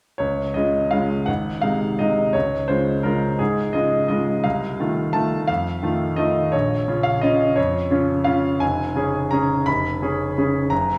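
A bright, brilliant baby grand piano rings with long sustain through a wet recital hall reverb, heard from further back in the room yet still up front and natural in tone. This elegant, sparkling classical waltz in Db major moves at 171 BPM in 3/4 with rubato and uneven beats, the solo piano spanning E#1 to B5 from 0.2 to 11.0 seconds. The short cut from a longer piece passes through Db, Ab7, F7/C and Bbm before settling on C#/E#.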